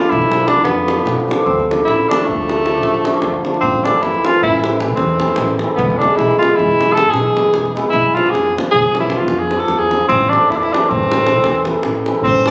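Heard through a phone held in the room, this short cut from a longer Balkan wedding-band piece sits in a moderate recital-hall reverb with the ring of a club around it. The mood is restless and bittersweet, in A harmonic minor and a straight 11/8 with eighths running at 306 BPM, as the chords move from Bdim through Dm, Am and E, then back to Bdim before settling on Am. A warm, vintage tenor saxophone carries the solo melody up front in a jazz style, with vibrato and scooped notes between A3 and A4. Beneath it the hammered cimbalom shimmers and rings, while a pizzicato upright bass on gut strings adds a woody, thumpy low end from 0.1 s. A deep davul sounds distant, as if across a large room. At 12.3 s a clear, bowed violin enters up front on a smooth, even C5 with vibrato, just as the cut ends.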